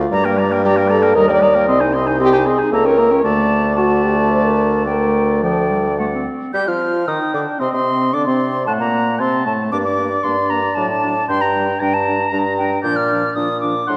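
A dark, reverberant scoring-stage sound, with a 1.8-second tail, surrounds this brief cut from a quick classical-period movement for wind quintet in G minor, played at 114 BPM in 3/4 with a rubato feel. The mood is urgent and restless. Up front, the bassoon anchors the bass with a smooth top and light vibrato, while the clear French horn and clarinet fill out the accompaniment in classical style. High above, a silver concert flute carries the melody with an airy, metallic straight tone and crisp attack, set at a distance, and the oboe's roomy second line, shaded with vibrato, sits just beneath it. The harmony darkens through a diminished chord around 2.7 seconds before settling on D, and a new section from 6.5 seconds turns through C minor and D7 back to G minor, arriving on Bb near 12.8 seconds.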